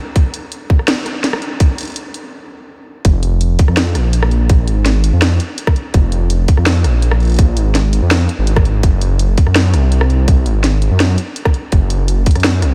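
Half-time drum and bass at 166 BPM in F phrygian, this spacious, heavy passage, cut from a longer track, opens with a build-up where a tight, up-front electronic kick joins a layered kit of hi-hat, rim click and cracking snare from 0.2 s, all set in studio reverb. A brief stop at 2.3 s gives way to the drop at 3.0 s, where a dark, detuned sawtooth bass enters with a fast attack and sustained notes. That bass rumbles and beats deep in the low register, saturated through tube warmth and sitting prominently under a light reverb.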